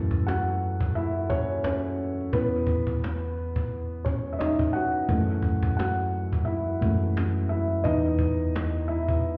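A swung sixteenth-note groove at 87 BPM in 4/4 drives this short lo-fi hip hop excerpt, its reflective, nostalgic mood carried by a cajon that enters at 0.1 seconds with a snappy, compressed, saturated snare-wired crack from hard hands. Up front sits a felt-muted upright piano, soft, mellow and intimate, its thick felt and audible action noise giving the part a dark, close character, further shaded by a low-pass filter. The piano carries the featured solo across the whole passage, ranging from E2 to F#5. The harmony alternates between F#m7 and C#m9/E, arriving at a rootless C#m9/E at 7.9 seconds. The whole mix sounds muffled, as if heard through a wall from a cassette tape, with a light stone-room reverb lending a faint sense of space.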